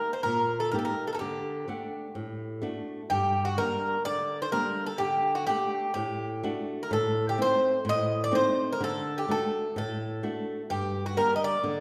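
Set in the wet reverb of a church or concert hall, this driving, dramatic Greek folk piece moves at 126 BPM in a straight 4/4 and settles into G harmonic minor from 3.1 s. The picked bouzouki carries the melody up front, its metallic double strings and some octave-doubled courses ringing bright, while a fingerpicked flamenco guitar, equally close and warm-toned, accompanies throughout. The harmony moves from Eb and D into Gm, then cycles through D and Adim before returning to Gm, and the passage is cut from a longer piece.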